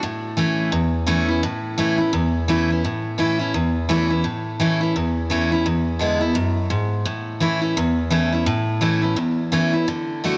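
A lone picked steel-string acoustic guitar opens this short rock fragment and carries it alone for its full 10.4 seconds, with a retro, rowdy spirit and a swung eighth-note feel in 4/4. The jumbo-bodied instrument sounds full-bodied and sits up front, reaching from low E2 up to F#4, and finger squeak along the strings adds a close, human texture. The harmony stays on A, moves to E7 at 5.7 seconds, and returns to A at 7.1 seconds, outlining a brief phrase that then begins to repeat. A moderate plate reverb with a long 3.5-second decay gives the guitar a lingering, roomy halo. The passage is lifted from a longer piece, so it starts and stops mid-flow.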